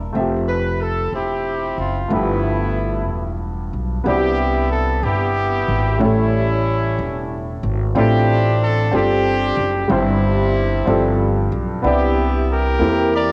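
Slow gospel in 6/8 at 62 BPM in dotted quarters, this jubilant, soulful excerpt is cut from a longer piece and stays in C major, with a home cassette character, light reverb and a touch of studio ambience. A tight, jazz-style horn section carries the melody up front from G3 to D5, its clear, present tone colored by cassette tape. A baby grand piano supplies accompaniment across a span from G2 to A5, its natural sound marked by short sustain and the same tape coloring. An acoustic upright bass, plucked on gut strings, sits up front with a woody, dark, thumpy low end from E1 to E2. All three parts play throughout, moving from Fmaj9 and G13 into a passage that opens on Cmaj9 at 4.1 seconds and travels through A7, Dm9/A and G9sus4 before settling on C7/E at 12.8 seconds.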